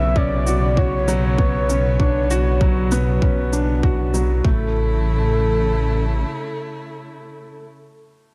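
Luminous and tender, this short slice of piano and strings electronica moves at 98 BPM in A major, opening on a drop over Bmadd9 before settling on A at 4.4 seconds. A velvety, chorused synth lead carries the melody above a dark string quartet playing bowed, expressive sustained chords with sidechain pumping, while a felt-muted upright piano repeats a mellow, intimate riff through digital delay until 8.3 seconds. A deep, rumbling detuned saw bass, also pumping, sits up front beside a tight, tape-warm electronic kick and a shaker, inside light small-room reverb.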